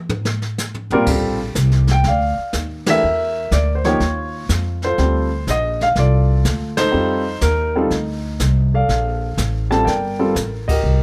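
A relaxed, playful swinging jazz piano trio fragment, cut from a longer piece, opens with brushed drums at 0.1 seconds before the grand piano and upright bass join at 0.9 seconds. The warm, intimate piano carries the melody up front with audible action noise and a touch of plate reverb, while the woody, thumpy pizzicato bass on gut strings sits close beside it. The kit plays brushes with dark cymbals, a medium-tuned snare and a boomy kick in a small room, and the band hits several shared accents under a light reverb.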